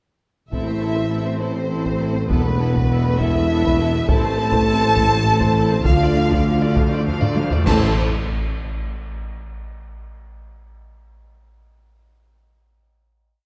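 A dark, dramatic orchestral film cue in A minor at 68 BPM in 6/8 opens at 0.5 s with a big taiko ostinato under lush bowed violins, one section softly rocking a two-note figure while the other doubles the tune at the octave, violas sliding with portamento, mellow French horns carrying the melody, very quiet dark cellos sustaining the bass while rich double basses and a mellow tuba double the bass line, and soft round timpani strokes on the bass notes, before dark cymbal swells, crashes and bass drum strokes join at 4.1 s and a drum fill leads to an accented final chord at 7.7 s that rings in the concert hall reverb.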